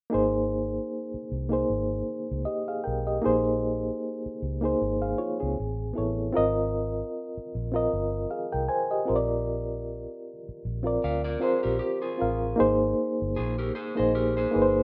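Soulful and smooth, this slow R&B fragment at 77 BPM in Ab major swings gently. It is carried by a reedy, worn electric piano with light overdrive and fast tremolo, slightly out of tune and up front, over a round, punchy, foam-muted fingered bass. A dark, slightly broken-up picked electric guitar joins at 11.0 seconds, shortly before the harmony shifts at 12.6 seconds, all in a rough home-demo mix with moderate studio reverb.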